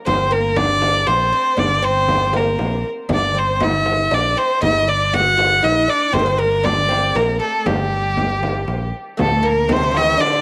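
Set in a straight 3/4 at 118 BPM, this melancholic, soulful passage of Persian modal music sits in G avaz esfahan and is cut from a longer piece. Up front, a clear, focused solo violin carries the melody with vibrato, its bowed tone boxy and trailed by tape echo. Behind it, a woody, plectrum-plucked oud with double strings plays a second line, while a growly fretless electric bass, direct and amped, anchors the low end and a deep frame drum sounds distant in a large room. At 9.2 seconds the music moves into a new section as a rich, nasal cello enters in the background, bowed with light vibrato and an intense edge. The whole ensemble is set in a light studio reverb.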